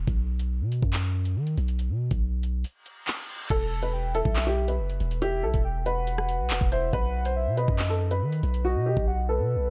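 A deep, sine-toned 808-style bass sustains up front through this dark, menacing half-time drill excerpt, joined by an electronic kit of knocking kick, metallic hi-hats, handclaps, rim clicks and crash cymbal, while a brief reverse cymbal at 2.8 seconds ushers in a woody, slightly detuned upright piano melody and a round, octave-layered synth lead with chorus, phaser and delay at 3.5 seconds, before the hi-hats fall silent at 8.6 seconds.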